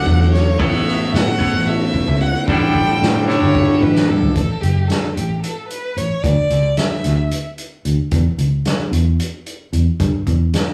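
Psychedelic rock in 7/8 at 223 BPM, centered on A mixolydian, with a trippy, hypnotic mood in a short passage cut from a longer piece. A bright, twangy electric guitar with tremolo plays a scooped, picked riff while a soft, flute-like tonewheel organ with key click and slow rotary speaker holds chords in the background, both dropping out at 4.3 seconds. A rich, bowed violin sings the melody with vibrato, portamento and a soft attack, continuing until 7.4 seconds. Underneath, an up-front fingered bass with a round, foam-muted tone and a soft-mallet drum kit with a punchy kick and rolled-off top carry the groove, a drum fill at 3.9 seconds leading into a second section where the harmony moves from F#m through Dsus2 and C#m to G5. The rough rehearsal-room sound adds saturation and a roomy, wet reverb.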